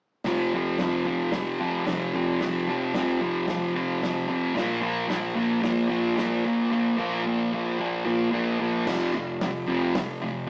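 Garage rock excerpt with a rowdy, swaggering strut at 111 BPM in straight 4/4, built on a thick, double-tracked fuzz guitar riff that sits up front and moves through F5, Bb5 and back to F5. A vintage acoustic drum kit backs it with a punchy kick, a medium-tuned snare, hi-hat and crash, all dark and rolled-off in a small room, with the drums dropping out at 10.1 seconds while the guitar rings on to 10.5. The rough rehearsal-room sound carries warm saturation, a small-speaker character and a moderate studio reverb.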